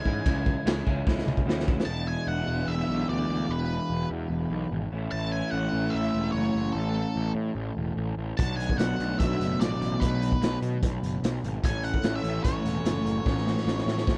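Indie rock with a wistful, jangly mood, built on an overdriven garage guitar riff, a bright, twangy twelve-string electric tucked in the background with ensemble chorus, and a growly, up-front fuzz bass, while a dark, distorted octave-fuzz lead carries the melody from A4 to A5. A punchy, saturated drum kit with dark cymbals and a pumping small-room sound plays a fill from 1.1 seconds, drops out at 1.9 seconds and returns at 8.4 seconds. The sound is dry and raw, with chords moving from C#m through E5, A and Bm7 before this fragment of a longer piece ends on another drum fill.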